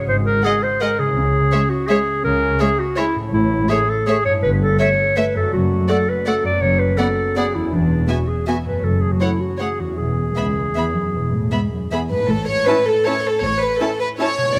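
A classical orchestral ballroom waltz in 3/4, sweeping and festive, with a rubato lilt that sways the melody of a soft, sul tasto violin section while a second violin section sits up front on a supporting line. A floating, pure viola section fills the accompaniment, a woody cello section and a smooth-topped double bass section carry the bass, a distant, roomy clarinet weaves a second line until 12.1 seconds, and a thumb-plucked concert harp rings out arpeggios in the background. The close, detailed sound sits in a moderate scoring-stage reverb, and the harmony settles home as a new section begins at 12.3 seconds.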